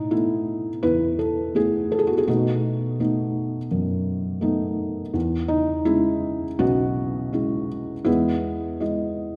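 A felt-muted upright piano carries this brief classical excerpt alone, its tone soft, dark and intimate, with thick felt dulling each note into a short sustain and the audible action noise adding a vintage closeness. The mood is peaceful and tender, moving at 83 BPM in 4/4 with a free, rubato feel in E major, tuned slightly low to A4 = 439 Hz. Across roughly 9.4 seconds the harmony passes from Asus2 to B7 at 2.3 seconds, then E6 at 5.2 seconds, settling on Emaj7 at 8.1 seconds. The piano spans from B1 up to D#5 and sits up front, while a wet scoring-stage reverb with a 2.1-second decay places it in the spacious acoustic of a church or concert hall. Cut from a longer piece, it plays as a lyrical solo passage.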